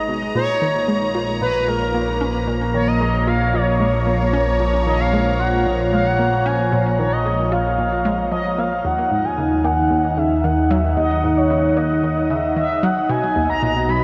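Cosmic and hypnotic, this ambient, sequencer-driven space music moves at 113 BPM in a straight 4/4, with a smooth, expressive synth lead carrying the melody over a swirling phased analog pad, a round, ring-modulated analog pluck riff, and a fat, nasal analog bass, all bathed in a dreamy cathedral reverb, as chords shift from A#m7 to D#m at 8.8 seconds, where a bubbling, resonant stepped-filter texture enters barely audibly.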